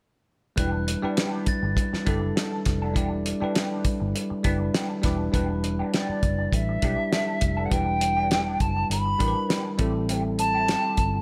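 Lush 1970s-style soul with a smooth, cinematic mood, built on a bell-like tine electric piano, a slightly broken-up wah guitar riff through a small old amp, a round foam-muted fingered bass and a cloth-damped, thuddy drum kit with a fat snare, while a ringing glockenspiel adds airy sparkle until 3.8 seconds and a pure, expressive silver concert flute with vibrato takes the melody from 5.9 seconds over a small, lightly reverberant room.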